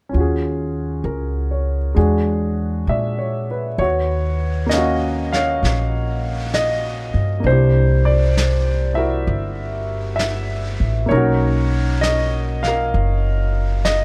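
Wistful, smoky jazz ballad at a slow 66 BPM with a gentle swing feel, where an intimate, up-front concert grand piano with audible action noise and deep bass comps through chords like Ebm11, E9 and Bmaj9 over a woody, thumpy pizzicato upright bass on gut strings, joined at 3.8 seconds by a softly mixed vintage brush kit of snare and hi-hat with a rolled-off top and a small, pumping room sound, all in a dry, close setting.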